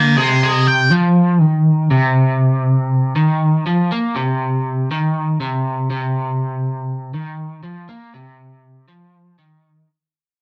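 A rough rehearsal-room recording with moderate studio reverb captures this dark, mysterious rock excerpt in C minor at 120 BPM, where a fuzzy, distorted octave-fuzz lead guitar with wah sings up front only until 0.9 s over a slightly broken-up, picked electric guitar riff treated with harmonic tremolo, which carries on alone through a fade-out from 1.9 s to 9.9 s.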